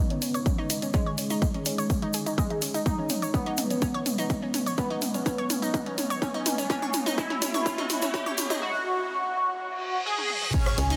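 This excerpt of dramatic, hypnotic melodic techno at 125 BPM opens on a juicy, resonant polysynth melody and a round, detuned analog pluck arpeggio, both under filter sweeps, chorus and delay and pumping against the sidechain, while a house drum kit of crash, hi-hat, rim click and toms comes in with them. A deep, moody pad with a warbling, vintage character sits in the background from 0.3 s, holding sustained chords through its own chorus and reverb, and a grainy, distant egg shaker adds texture until 8.6 s. The punchy electronic kick arrives up front at 0.5 s, and the chords move from C#sus2 to G#m to F#m. The whole passage is a build-up, with drum fills and a filter sweep running across it, a riser from 5.4 s, and a reverse cymbal leading into an impact at 10.5 s. In the final moments a very quiet acoustic tambourine and high-tuned snare appear, and a tight, driving sawtooth sequencer bass lands on C#2 just before the cut. 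A huge ambient reverb surrounds the parts, and the master is dense and heavily limited.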